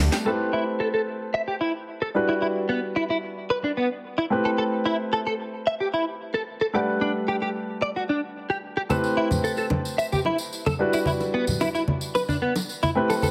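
A clean, direct-recorded electric guitar carries the riff up front, its picked tone softened by ensemble chorus, a low-pass filter and tape echo. This sensual, groovy nu-disco excerpt moves at 111 BPM in a straight 4/4 feel in A dorian, cycling through Am7, Em9 and Gmaj7. A warm grand piano supplies accompaniment, polished and present with short sustain and its own tape echo. Tambourine, congas and bongos give a brief tap at 0.1 seconds, then return at 8.9 seconds with bright, saturated, hard-handed hits. The whole mix sits in a moderate plate reverb with digital ambience and is heavily compressed into a radio-like sound.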